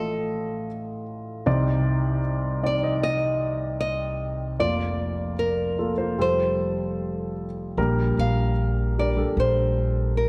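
A straight 4/4 pulse at 76 BPM carries this tender, hopeful acoustic folk-pop ballad in Bb major, cut from a longer piece. A small, fingerpicked nylon-string guitar with fresh strings and audible finger squeak sings the melody over a dark, mellow, vintage-toned baby grand piano, both up front. At 7.8 s a woody, thumpy pizzicato upright bass on gut strings joins, all set in a moderate concert hall reverb within a dark, warm production.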